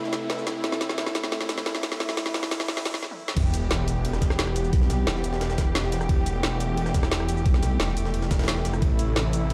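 Dark technical drum and bass at 176 BPM in E minor, tense and dark, opening on a build-up where sustained chamber strings, a muted felt piano with dub echo, and a snarling distorted saw bass pump under sidechain alongside a very quiet warbly tape-like pad and a riser and sub drop, while two drum kits fill toward a brief break. At 3.4 s the drop hits with an impact as an overdriven knocking electronic kick joins the up-front woody snare and bright hats of the main kit, backed by a faint gritty jungle sampler kit. A nasal, resonant vowel-sweep wobble bass bursts in at 4.7 s and again at 7.5 s, everything sitting in a large, bare room.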